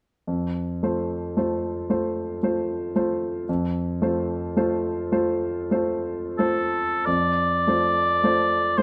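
A warm, vintage-toned oboe carries the melody in this short cut from a longer romantic classical duo, entering at 6.4 seconds and singing up front in a compact range. Before it arrives, the concert grand piano plays the accompaniment alone from 0.3 seconds, its clear, smooth sound anchored by a deep bass. The music sits in F major and moves in a slow, rubato 3/4, drifting between 40 and 58 BPM. At 7.1 seconds a new passage begins, with both instruments sounding together until the fragment ends. A light reverb gives the serene, lyrical duo a gentle sense of space while keeping both players close.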